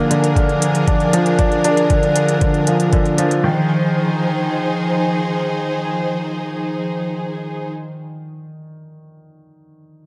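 A mellow, felt-muted upright piano carries an intimate riff through a digital delay, playing on to 10.1 s in this hypnotic, cinematic piano-and-strings electronica cut at 117 BPM in F dorian. A lush bowed string section holds sustained chords with vibrato and sidechain pumping, moving from Bb7 to Fm7 at 3.4 s and ending at 7.7 s. Early on, a muffled, thumpy, pitched-down kick and crisp electronic hats drive the groove, the kick dropping out at 3.0 s and the hats at 3.4 s, all set in a moderate scoring-stage reverb.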